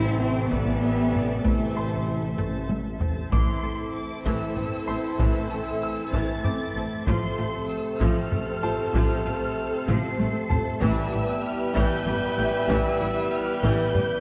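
Tense and futuristic, this cinematic hybrid of orchestra and electronics moves at a slow 64 BPM in 6/8 in A minor, with a lush violin section carrying the melody over a second violin line, a clear viola accompaniment, punchy French horns, distant trombones, a hollow flute-like pad, and a very quiet, tight sawtooth synth arpeggio, all anchored by rich cellos and double basses on the bass. Heavy-sticked taiko drums enter at 0.5 seconds, close and dry, with fills around 2.4 and 9.9 seconds, while a bright baby grand piano adds delayed, brilliant texture in the background. The harmony shifts from Am to F/A and then Em/A, and the dark production sits in a wet concert hall reverb.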